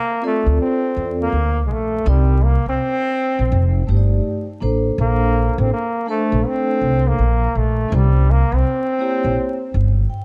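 This jazz-hop excerpt carries a cool, mellow mood over a swung sixteenth-note groove in 4/4. A bright, punchy trombone leads the melody in a forceful jazz style with light vibrato, sitting up front yet with a roomy edge. Beneath it, a vibraphone played with soft mallets gives a ringing, metallic, airy accompaniment shaded by a slow motor vibrato, closing with a short fill at 9.7 seconds. A woody, growly pizzicato upright bass on steel strings anchors the low end and is the most prominent part in the mix. The harmony moves from Dm7 through Cm9, F13 and Bbmaj9 to a tense C7b9. The dark, warm production adds vinyl crackle, light reverb and a small-room ambience.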